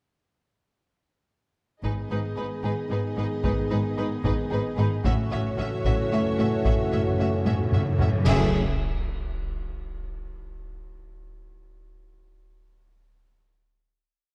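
Taiko ensemble drums struck with hard sticks drive this short, dramatic and epic orchestral film cue, pounding a big ostinato from 1.8 seconds in a straight 6/8 at 75 BPM in F# dorian. Above them, a rich, focused studio violin section carries the melody with vibrato and repeated notes, supported in the background by a smooth second violin line, a clear, distant viola section and a sustained, even string section. Warm French horns and trombones add slow swelling chords, while rich cellos and a very quiet double bass section, soft in attack with portamento, hold the bass beneath a harmony moving from G#m to F#m7/A. At 5.0 seconds, round timpani on soft mallets roll into the louder passage alongside dark cymbal swells, crashes and concert bass drum strokes, building through a drum fill to a band accent and a final F#m9 chord at 8.3 seconds. The dark, warm production sits in a wet scoring-stage reverb that lets the ending ring out.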